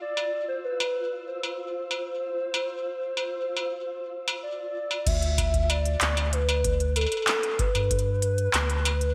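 The clip opens on a warbling, nostalgic lead playing the melody between A4 and E5, its mellow tone touched with subtle chorus, delay and vibrato, while a flickering, grainy texture drifts softly behind it with a slow attack and long release. This is a melancholic, cerebral slice of IDM at 95 BPM in a straight 4/4, cut from a longer piece and built over an Fmaj7(no3) chord in its first half. At 0.2 seconds an up-front industrial drum kit arrives with crisp hi-hats, handclaps, crash cymbal and struck metal, given a gated reverb. At 5.1 seconds the grainy texture stops and the harmony falls away, as a round, deep sub bass between D2 and G2 and a tape-warm electronic kick drum enter, the kick dropping out at 8.0 seconds. The whole sits in a lush hall reverb with a bright 1980s-style digital sheen.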